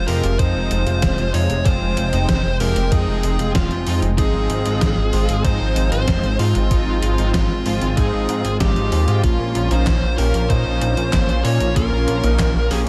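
Synthwave at 95 BPM in a nostalgic, moody vein, this 12.9-second cut moves from Fm through Ab6 to Bbm, with a dark, overdriven electric lead guitar carrying the picked melody over a lush, detuned unison pad that pumps to the sidechain in the background. Up front, a glossy, nasal chorused synth bass built from pulse and sawtooth waves with a filter pluck anchors the low end, while bold, warbling analog synth brass stabs in from 0.1 seconds with a filter sweep. A gated 80s drum machine of handclaps, hi-hat and a gated-reverb snare also enters at 0.1 seconds, and an overdriven, thumpy electronic kick joins at 0.4 seconds, all set in a digital ambience.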